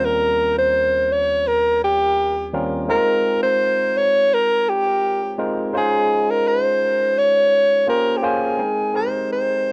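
Home-cassette sound with light reverb and a small-room feel frames this short, silky, bittersweet soul fragment, where a bright, close-miked alto saxophone sits up front with scooped, pop-style solo notes over a barky tine electric piano, lightly overdriven through a combo amp, that plays chords from Eb13 through Dbmaj9/Ab to a closing Abmaj7 across the full 9.7 seconds.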